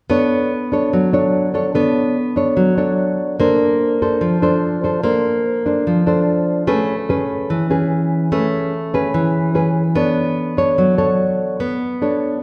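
A dark, full-bodied, thumb-plucked nylon-string guitar sits up front and plays alone through this sunny, relaxed bossa nova fragment at 146 BPM in a straight 4/4, moving from Bm9 through Bbmaj9 to Amaj9 and back to Bm9, with a second section arriving at 6.7 seconds, all bathed in the wet reverb of a church or concert hall.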